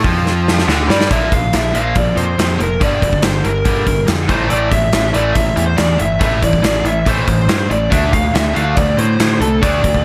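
Heavy and aggressive, this hard rock excerpt at 141 BPM in A phrygian drives a bright, double-tracked high-gain guitar riff over a punchy picked electric bass and an up-front gated 80s drum kit with a medium-tuned snare in an airy stone room, as a drum fill rolls beneath the dark, distorted lead guitar melody that enters at 0.9 seconds with slapback echo, moving through D5, Bb5, Gm7 and Am in a small, lightly reverberant room.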